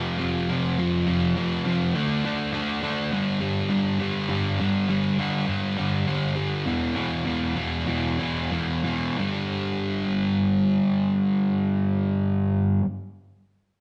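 A sludgy, overdriven electric guitar, picked, double-tracked and placed up front, plays a rowdy, energetic punk passage in G major at 172-205 BPM in a straight 4/4, moving through F5, D5, G5 and E5 power chords before landing back on G5 at 9.2 seconds. The pace slows from 6.7 seconds, and this short fragment of a longer piece sits in a wet stone room with a rough rehearsal-room sound, tube saturation and a dark, dulled top end.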